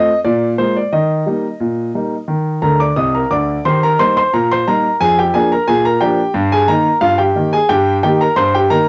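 A straight 2/4 pulse drives this lively, cheerful ragtime excerpt, played by a solo grand piano with a smooth, vintage tone that sits up front and carries the coloring of cassette tape. The piano spans a broad range from deep bass to bright treble, moving from a Bb7 to Eb opening into a short fill from 2.6 to 3.6 seconds before a new section begins. A snug, reverberant booth ambience surrounds the home-recorded sound.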